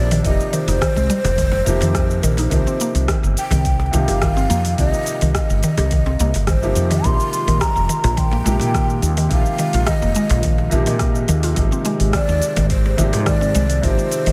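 Mystical and earthy, this organic downtempo piece moves at 106 BPM in a straight 4/4, tuned to A4 = 441 Hz. A breathy, hollow ney carries the melody, trailed by tape echo, over a felt-muted upright piano whose soft, intimate chords pump under sidechain and repeat through analog delay. A mallet-like synth pluck with a fast attack and short decay spins arpeggios through chorus and delay. The fretless electric bass sits up front, dark and round, beside a deep electronic kick, while an afro-pop kit adds metallic hi-hats, rim clicks and shaker and a cajon played with soft hands stays in the background. A smooth, detuned analog pad enters at 7.0 s, very quiet, with chorus and phaser, as the harmony moves from F7sus2 through Cm7 and Bb7sus4 to Abmaj7 in an echo-heavy mix bathed in moderate spring reverb.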